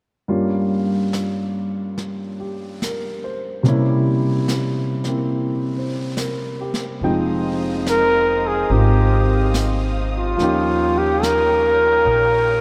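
Melancholic and intimate, this swung jazz ballad opens with a natural, up-front concert grand piano rich in deep bass and a smooth brushed snare and hi-hat, before veiled, con sordino strings with vibrato and a woody pizzicato upright bass arrive at 7.0 seconds, and a dark, smooth-topped solo trumpet with scooped notes takes the melody at 7.9 seconds, the music resounding in a vast, echoing cathedral space.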